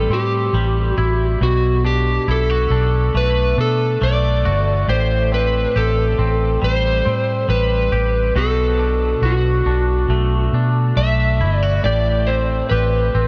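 Dream pop with an ethereal, melancholic mood, this short passage, cut from a longer piece, drifts unhurriedly over a gentle alternation of Am7 and Bm7 chords. An electric slide guitar carries the melody up front, its fingered tone slightly broken-up and trailed by delay. Beneath it, a twangy electric guitar picks clean, compressed arpeggios, colored by a subtle chorus and its own delay. A vintage muted fingered electric bass sits prominently in the mix, dark, round and punchy with a foam-muted, amped character. All three parts play throughout the 13.3 seconds, and a light reverb gives the recording a soft sense of space.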